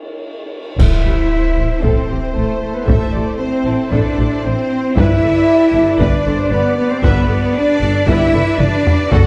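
A dark, warm mix sits in a moderate scoring-stage reverb for this epic cinematic film-score passage at 115 BPM in 4/4, cut from a longer piece. After a short opening drum fill, the full orchestra arrives at 0.8 s on A minor, where dark, close clash cymbals and concert bass drum punch up front until 1.8 s, and hard-stick, band-limited taiko drive throughout. Background strings carry the melody on a studio violin section, with a focused symphonic violin section and a pure, crisp concert flute adding a second line, a distant viola section accompanying, and mellow French horns and a soft-attack woodwind section holding chords, all above lush cellos and even double basses before the harmony moves to G.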